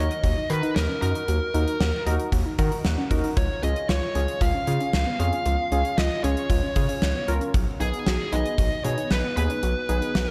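Nostalgic and upbeat, this synth-pop excerpt puts a distorted, picked fuzz lead guitar melody with tape echo up front over a punchy gated 80s drum kit in a bright stone room, a deep analog bass blending square and sine tones, detuned sawtooth analog keys with chorus and a filter sweep that add a fill from 2.3 to 3.4 seconds, and a soft, dark pluck playing arpeggios in the background through chorus, phaser and tape echo, set in a concert hall reverb as the chords move from Ebm to Db to Cb6.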